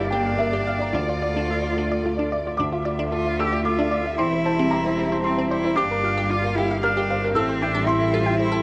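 A light reverb and small-room ambience surround this short, melancholic passage of neoclassical piano and strings, cut from a longer piece in D minor at 114 BPM in 3/4, its rubato feel lending a sense of longing. A felt-muted upright piano carries the accompaniment up front, its tone soft, mellow and a little boxy, spanning from the low register to the high treble. Beside it, a single bowed cello plays a clear, focused second line with vibrato, while a distant studio string section holds warm sustained chords with soft attacks, vibrato and expressive portamento. A lone bowed double bass anchors the low end with a rich, expressive sound, also touched by vibrato and portamento. From 0.1 seconds a glassy, crystalline digital pluck spins arpeggios with fast, decaying attacks and a filter sweep, coloured by chorus and tape echo. The harmony moves through Gm7, Dmadd9, C/E and back to Gm7 before settling on Am7, with a shift into a new section at 2.6 seconds.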